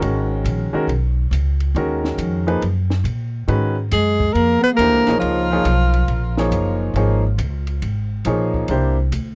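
This searching, hypnotic modal jazz excerpt opens with a clear baby grand piano playing accompaniment over a pizzicato upright bass and a compact cocktail drum kit, swinging in 4/4 at 138 BPM. The piano sounds intimate and natural, with its action noise audible, while the woody, steel-strung bass sits up front. The drums stay low in the mix, with a dark, rolled-off top, a high-tuned snare and a tight kick among the hi-hat and ride cymbal. The harmony rests on G#m11 before moving to C#6 and touching C7 near the close. At 3.9 s a present tenor saxophone carries the melody with light vibrato, scooped notes and a touch of tape echo, joined by a warm, subtoned bass clarinet on a second line, and both fall away by 6.5 s. The recording is dry and close in a 1970s studio style.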